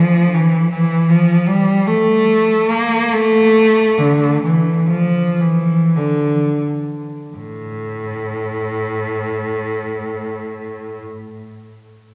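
A lone bowed cello carries this brief classical passage, its tone rich and focused with a singing vibrato, a single player heard up front yet with a distant quality. The mood is yearning and lonely, the phrasing free and expressive in a rubato 3/4, with tempo drifting between 35 and 85 BPM. The line stays in the instrument's low-to-middle register, from A2 up to Bb3. Over the opening stretch the pace slows from 0.3 to 7.4 seconds, where a new section begins and runs to about 10.8 seconds. A long church reverb surrounds the cello, letting each note hang in a resonant, spacious hall. Cut from a longer piece, the excerpt lasts 11 seconds.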